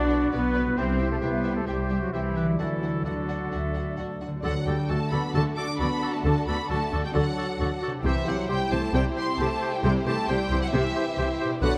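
A lush, vibrato-rich symphonic violin section carries the melody in this adventurous, triumphant cinematic excerpt at 134 BPM in D mixolydian, moving through Bm, C and D over a rich, up-front bowed double bass section, a smooth cello section and a dark, woody viola section, while a distant studio violin section, an airy, very quiet flute ensemble, a solo oboe and a bright clarinet add second lines, a background French horn section holds sustained chords, a ringing fingerpicked concert harp plays arpeggios, and a vintage-toned trumpet punches stabs until 4.0 seconds, all set in a moderate scoring-stage reverb.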